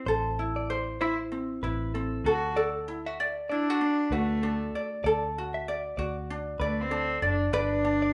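A single bowed cello carries the melody in this heartfelt, carefree pop excerpt, entering at 1.0 seconds with a reedy, gut-string tone in a period style that sits up front. Alongside it, a light, fingerpicked ukulele provides the accompaniment, while a clean, compressed electric guitar, picked and recorded direct, plays arpeggios higher up. A vintage fingered electric bass, foam-muted and amped, anchors the low end with a dark, round and punchy sound. The tune moves at 96 BPM in 4/4 with a swung sixteenth-note feel, its harmony moving from A minor to D and reaching G at 7.5 seconds, with a new section starting at 5.0 seconds. The band sounds as if playing live together in one room, touched by light reverb, and the clip is cut from a longer piece.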